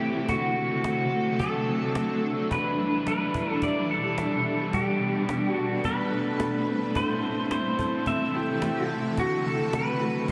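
Dream pop with a melancholic, haunting air, this excerpt sets a clean, compressed pedal steel guitar up front, playing the slide melody with volume swells through lush chorus and analog delay, beside a bright, blurred granular cloud pad of detuned, slowly evolving sustained chords, while a dark, fingered electric guitar arpeggiates in the background, a lo-fi overdriven garage guitar with tremolo picks out its accompaniment underneath, and a woody, close and dry cajon with faint snares joins at 0.3 s, all steeped in a cathedral-like reverb over a D7, Em7, Gadd9 and Am progression.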